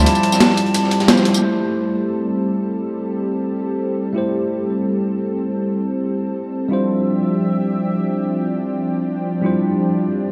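This dreamy, rolling cut from a liquid drum and bass track in A minor opens on a drop. A distant silver concert flute holds a pure, straight-toned A5 through a low-pass filter and dub echo, over a clean tine electric piano with phaser and digital delay and a thick, warbling unison pad that blooms slowly through chorus. Two breakbeat kits come in almost at once. An up-front, compressed, sampler-style kit plays hi-hat, ride, medium-tuned snare and tambourine, all low-pass filtered. Behind it, a saturated acoustic kit adds high-tuned snare and hats with a rolled-off top and high-pass filtering. The flute drops out at a band accent at 1.1 seconds, and the drums fall away by 1.4 seconds, leaving the electric piano and vintage sawtooth-and-square pad to drift in free time over Dm11, Am7 and back to Dm11 through a lush hall reverb. The production is dark and warm throughout.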